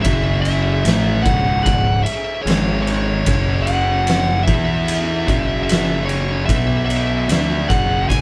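A big, live-in-one-room sound with light reverb frames this hypnotic, sludgy slice of stoner and doom metal, cut from a longer piece and running about 8.2 seconds in a straight 4/4. An oversized, low-tuned acoustic drum kit sits up front with a boomy kick, fat snare and dark ride cymbal, its saturated, gritty tone filling a pumping room. Two thick fuzz guitars carry the riff low in the register; one is dark and prominent, while the other is a very quiet, warmer double. Beneath them, a fingered electric bass with overdrive gives a round, punchy low end. Above it all, a compressed fuzz lead guitar sings the melody up front, while a soft vintage string machine holds silky, slow-attack chords, very quiet and shimmering with phaser and ensemble chorus over a progression that keeps returning to F#5.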